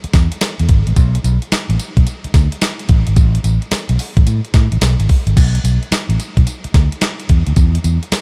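A crisp, sampler-style 8-bit drum machine drives this punchy, bouncy new jack swing cut, its thumpy kick and fat snare sitting up front with hi-hat, tambourine and crash cymbal, all carrying a tape-tinged, small-room grain. A fingered electric bass, amped, warm and punchy, plays low and up front alongside the kit at 109 BPM in 4/4 with a swung sixteenth feel in B dorian. The dry, close sound holds across an opening passage that repeats at 5.4 seconds before the clip ends at about 8.2 seconds.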